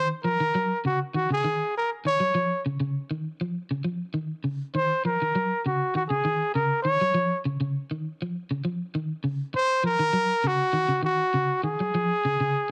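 A breathy, close-miked trumpet sits up front, carrying the melody between Gb4 and Db5 with vibrato, a soft attack and an intimate, whispered pop-style tone. This short afrobeat passage moves at 100 BPM in 4/4, with a light swing on the sixteenths that gives it a driving yet hypnotic feel. Beneath the horn, a slightly broken-up electric guitar, picked and also up front, plays arpeggios in a low register between Db3 and Gb3, colored by a tremolo effect. The harmony in Eb dorian rocks steadily between Ebm7 and Db roughly every 2.4 seconds. Light reverb and a rolled-off top end give the recording a mellow, rounded sound, and the whole fragment runs about 12.7 seconds, cut from a longer piece.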